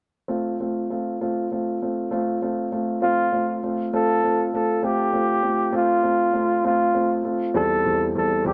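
Pop in a straight 6/8, this melancholic, dramatic excerpt opens at 0.3 seconds with a woody upright piano playing accompaniment, its long sustain ringing out from a close, up-front position. At 3.0 seconds a breathy flugelhorn takes the solo melody in a jazz style, its vintage, warm tone carrying a light vibrato and scooped notes. The horn stays in a narrow upper register while the piano spans a deeper range beneath it, both parts sitting close to the listener. The harmony rests on F for most of the passage before shifting to C/E at 7.5 seconds. A moderate plate reverb with a long tail surrounds the performance, and the top end is gently rolled off, lending the sound a soft, dusky character.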